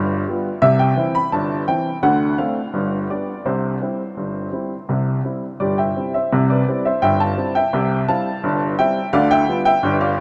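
A lone upright piano opens this cheerful, jaunty ragtime fragment, its tone clear and woody with a slightly detuned edge that gives it an old-parlour charm. The instrument sits up front and present, spanning from a deep G1 in the bass to B5 at the top, with notes ringing into a long sustain. The music moves in a straight two-beat metre, running from a G7 into C, then touching D7 and G7 before settling back on C. The opening phrase is heard again starting at 6.3 s, with a G7 arriving near 9.1 s as this brief cut from a longer piece closes at 10.2 s. A moderate amount of huge ambient reverb, with a decay of 6.6 seconds, surrounds the piano and lends the cheerful ragtime strut a spacious glow.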